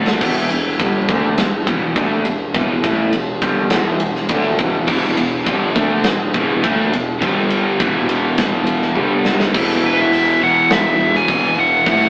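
A straight 4/4 groove opens this energetic, anthemic hard rock passage, cut from a longer piece, with a big, acoustic rock drum kit up front: a punchy kick, a medium-tuned snare, toms, hi-hat, ride and bright crash cymbals, with fills at the start and again just before 9.5 seconds. Underneath, a round, fuzz-laden picked bass plays the low line with overdrive. Two overdriven hollow-body guitars play the riff in the background, one colored by harmonic tremolo and the other by a phaser. A scooped, high-gain, double-tracked guitar adds distorted bite to the riff after a brief stab at the opening, returning at 4.9 seconds. The harmony moves between E5 and G5 power chords. At 9.9 seconds a dark, smooth overdriven lead guitar steps to the front with a melody, all heard through a moderate stone-room reverb with a rough rehearsal-room, AM-radio character.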